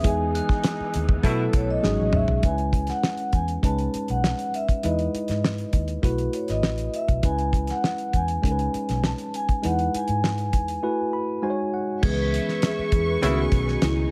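A soft-malleted vibraphone carries the mellow, ringing melody from the start, with tape echo, over a worn, slightly out-of-tune tine electric piano, a round, foam-muted electric bass and a damped, up-front drum kit with a fat snare, while sul tasto strings and a faint bell-like glockenspiel shade the opening. This smooth, bittersweet slice of lush 1970s-style soul gets a brief punchy stab from a distant horn section at 1.2 seconds, and the electric piano takes a fill at 10.8 seconds. The strings and glockenspiel return at 12.0 seconds and the horns at 13.2 seconds as the passage settles onto an Amaj9#11 chord, all within a small room ambience.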